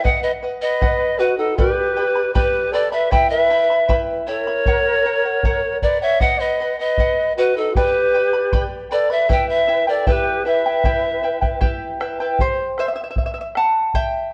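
Andean folk for an Andean ensemble, melancholic and earthy, in which an up-front, polished pan flute carries the melody with an airy, chiffy straight tone while a large quena adds a second line with vibrato and a crisp attack. Bright fingerpicked charango, shimmering on its double strings, and a deep, close bombo drive the accompaniment in a dark production set in a moderate recital-hall reverb. The flutes stop at 11.6 seconds, and from 12.4 seconds the charango takes a solo over a C chord, with the bombo still beneath it, until 14.3 seconds, where this cut from a longer piece ends.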